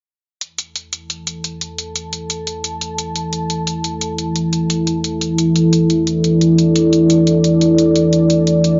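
A dark analog pad dominates this short excerpt of dark technical drum and bass at 175 BPM in 4/4, holding deep, moody sustained chords from 1.4 seconds that span E3 to A5. Its detuned sawtooth and triangle tones, reinforced by a sub octave and softened by a slow attack, sit up front with a chorus effect that thickens the sound into something full-bodied. An electronic hi-hat starts earlier, at 0.4 seconds, layered and overdriven, with a bright, gritty edge that carries the sound of a small room. The hats sit well beneath the pad in level. A plate reverb with a long tail gives the whole mix a wet, cavernous feel, while the top end is rolled off for a shadowy, futuristic atmosphere that fits its dark mood.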